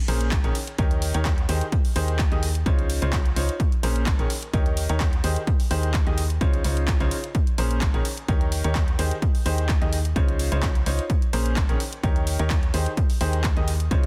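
A brilliant, worn grand piano riff with tape echo opens this soulful, energetic piano house excerpt at 128 BPM with a light 16th-note swing, joined at once by a round, dark FM bass (both pumping with sidechain) and overdriven, layered house handclaps and hi-hat, while a punchy analog-style electronic kick enters at 0.3 s, all cycling through Bbm9, Eb7, Abmaj7/Eb and Dbmaj9 inside a digital ambience and a dense, heavily limited modern master.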